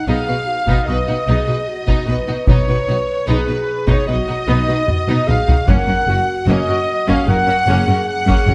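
Relentless and heroic, this short cinematic passage, cut from a longer piece, is epic orchestral film score at 75 BPM in a straight 4/4, moving from a B chord to Gb at 5.7 seconds. Clear, close-miked trumpets punch out stabs over sustained chords from a dark, distant French horn section, while a warm, lush symphonic violin section carries a second line above a rich studio violin melody that sits in the background. Clear, intense violas fill in the accompaniment, and the bass is anchored by smooth, even cellos and focused double basses, all bowed with vibrato. A taiko ensemble struck with heavy sticks enters at 0.7 seconds, close and dry, and drives forward with a fill from 4.9 to 5.7 seconds. A moderate scoring-stage reverb gives the orchestra a grand sense of space.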